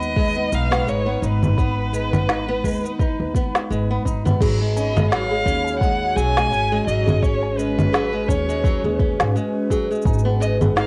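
An expressive, distant bowed violin with vibrato and portamento carries the melody through tape echo in this intimate, autumnal folktronica excerpt at 85 BPM, set over a growly, woody pizzicato upright bass, bright fingerpicked nylon-string guitar arpeggios, a warbling, nostalgic tape-like pad of sustained chords and up-front overdriven electronic drums with congas, shaker, snare, crash and a soft kick, while a reversed, dreamy swelling texture hovers in the background until 4.4 s, when a delicate, tinkling, slightly out-of-tune music box enters with a second line as the harmony moves from G#m to F#sus2/G#, all captured as a home cassette recording with light reverb.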